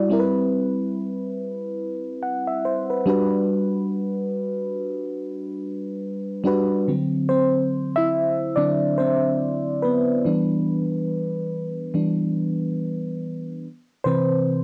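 A mellow FM electric piano, round and dark with a noise layer and a fast attack that decays softly, carries this romantic, dreamy R&B fragment on its own from 0.0 to 14.6 seconds, sitting up front with chorus and a cassette-tape color. At a relaxed 71 BPM in 4/4 with a gentle swing on the sixteenths, it moves from Cmaj7 and Gmaj7 into a passage from 6.9 seconds through D7 and Em7 before returning to Cmaj7. A moderate studio reverb and the intimate character of a home cassette recording frame the sound.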